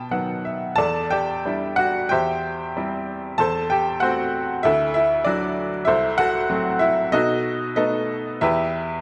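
Set in a moderate concert-hall reverb, this bittersweet, moody fragment of lyrical classical solo piano in E minor moves at 94 BPM in 4/4 with uneven, rubato beats, as a bright, woody, slightly detuned upright piano sits intimate and up front with audible action noise, opens with a brief fill over B in the first 0.8 seconds, and ranges from C2 to B5 through Em7, C/E, Am/E, Dadd9, F#dim/C and B7 before settling on Em at 8.4 seconds.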